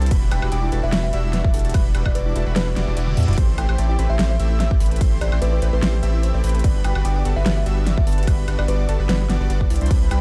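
A half-time 4/4 groove at 147 BPM with a light 16th-note swing drives this euphoric, lush future bass excerpt in G major, where a punchy overdriven kick and a thick saturated sub bass sit up front beneath huge detuned supersaw chords riding sidechain pumping and tape echo, a woody kalimba melody, and a tine-like FM synth pluck and a dreamy sine lead with chorus and vibrato arpeggiating, all in the background, along with a big-room kit with a huge snare and metallic hats, a reverse cymbal from 2.9 seconds and a drum fill at 3.1 seconds as the kick drops out before the chords move from Em9 through Am7 and Gmaj7 to Cmaj9, all in a dark, dry production.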